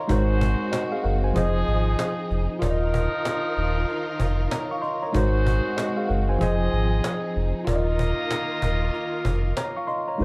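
Tough and dark, this swung boom-bap hip-hop excerpt sets a worn, slightly out-of-tune tine electric piano up front against lush bowed strings and a deep sine sub bass with octave, while tight, punchy vintage horn stabs ring through digital delay and a snappy, band-limited cajon played with hard hands drives the groove under light reverb, the chords cycling Ab7, Fm7 and Ebsus2.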